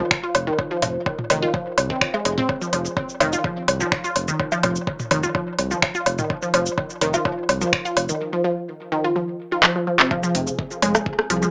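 A squelchy, resonant blip pluck sits up front in this clinical, hypnotic minimal techno excerpt at 126 BPM in F minor, its juicy riff pumping against the sidechain through phaser and tape echo over a round, deep analog bass. A knocking electronic kick, a garage kit with metallic hats, cabasa, finger snaps and handclaps, and an overdriven techno kit of cowbell, rim click, toms and woodblock fill out the groove in a small room, with a drum fill leading to a drop at 10.1 seconds. There a bubbling stepped-filter texture with chorus and long release enters in the background, while the whole mix carries a small speaker sound.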